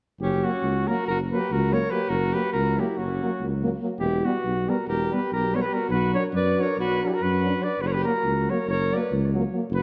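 A clear, vintage-toned flugelhorn with tape echo carries the melody up front in this restless, virtuosic Balkan folk passage in 9/8 at 284 BPM, cut from a longer piece in F# phrygian dominant, while a smooth-topped alto saxophone with vibrato plays a second line, a mellow, roomy tuba anchors the bass, and a punchy trombone and a French horn with light vibrato add background accompaniment over F#, Em and Bm chords in a moderate recital-hall reverb.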